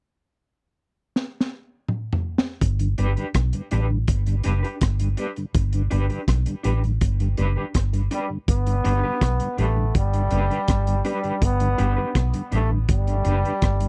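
Roots reggae with a sunny, warm mood, this excerpt from a longer piece opens on a crunchy breakbeat drum kit of hi-hat, kick, rim click, snare and toms at 1.2 seconds, rolling through a fill before the groove settles. The drums sit up front with a saturated, gritty character, a tight kick, a high-tuned snare and a rolled-off top. At 2.6 seconds a vintage muted fingered electric bass arrives, round and punchy in its low register, as the harmony lands on G. Moments later a mellow tonewheel organ slips into the background, clean and dark with chorus vibrato, a slow rotary speaker and tape echo. An electric guitar through a small old amp joins it, picked and slightly broken-up with tremolo and its own tape echo. From 8.1 seconds a bright trombone takes the melody as a pop-style solo, colored by tape echo, all within a dry, close 1970s-style studio sound.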